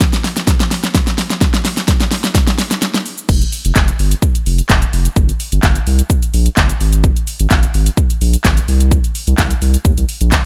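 A punchy, electronic pop drum kit opens this driving, bittersweet dance-pop excerpt in C minor at 128 BPM with a 3.3-second build-up fill of fat snare, metallic hi-hats, handclaps, shaker and crash, before a deep, saturated sine sub bass arrives up front on the drop at 3.3 seconds, pumping with sidechain compression in a digital ambience.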